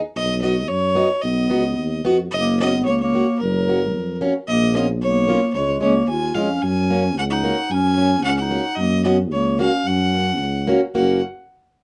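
Set in a small, moderately reverberant room, this jolly, festive alpine folk dance-band fragment in a straight 2/4 puts a clear, nasal fiddle with light vibrato up front on the melody over an up-front, dark tuba bass, while a boxy, picked, plugged-in parlour steel-string guitar enters at 0.4 seconds and a soft-attacked, classical-style clarinet adds a second line from 1.2 seconds.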